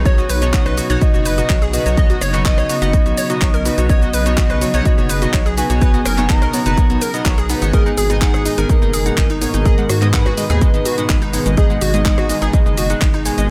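A straight 4/4 pulse at 125 BPM drives this dreamy, expansive progressive house excerpt on a B add9 chord, where a punchy, up-front electronic kick and a house kit of handclaps, hi-hat, rim click and shaker sit under a round, dark analog bass, a lush detuned supersaw pad with phaser in the background, crystalline wavetable pluck arpeggios with chorus and dub echo, glossy chorused polysynth stabs, and a mellow octave-layered lead melody with vibrato, the bass, pad, pluck and stabs all pumping against the kick in a dry mix.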